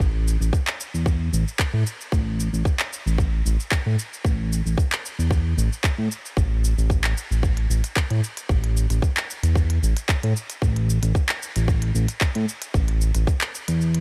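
With little reverb, this hypnotic, mystical organic downtempo excerpt moves at 113 BPM with a light sixteenth-note swing, built on an up-front smooth synth bass of detuned sawtooth and square tones, mellow and sustained with vibrato and sidechain pumping, beneath a tight, tape-warm electronic kick re-recorded in a large room that stops at 13.4 seconds, and a quieter organic electronic kit of cabasa, handclaps and crisp hi-hats.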